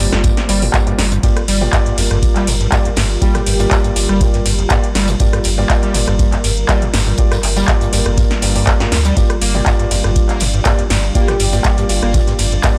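Driving and trippy, this acid house passage rides on a deep analog kick and a punchy electro drum machine with metallic hats, handclaps, ride and rim clicks, while a very quiet, damped 70s kit adds a fat snare and tambourine underneath. A squelchy, resonant acid bass riff, distorted and gritty with chorus and tape echo, pumps alongside a round sine sub bass and a moody, detuned sawtooth pad holding a single minor-seventh chord, as mellow vintage piano stabs trail tape echo. A breathy, flute-like lead drifts in briefly at 3.2 and 11.2 seconds, all set in a dry, saturated small-room sound.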